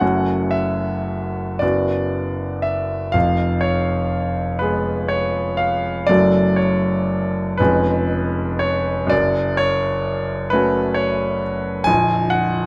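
Close, detailed microphones and a light reverb place a clear concert grand piano up front, with its intimate, polished tone, deep bass, long sustain and the audible noise of its action all present. This romantic nocturne for solo piano, cut from a longer piece, moves slowly in 6/8 at roughly 37-45 beats per minute counted in dotted quarters, shaped by a free, rubato feel. The mood is dreamy and nostalgic, set in F# minor, with the piano ranging from A#0 up to G#5. The harmony circles between F#m, Bm/F# and C#7/E#, settling back on F#m at 9.1 seconds. It closes on an F#/A# chord at 11.9 seconds, just before the passage ends at 12.7 seconds.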